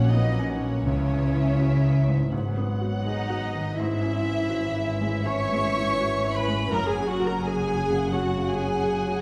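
Cinematic, emotional film score for orchestra, sorrowful and bittersweet, moving at a rubato 83 BPM in 4/4 across this 9.2-second fragment of a longer piece. A dark violin section carries the melody in the background while a hollow silver flute and a rich, close violin section share a second line; a viola section and a felt-muted upright piano supply accompaniment, a mellow French horn section holds distant sustained chords, and a cello section joins a woody double bass section on the bass, the strings bowed sul tasto with vibrato. The ensemble sits back in a reverberant recital hall as the chords move from F#/A# through C#m and G#m7 to a closing F#5.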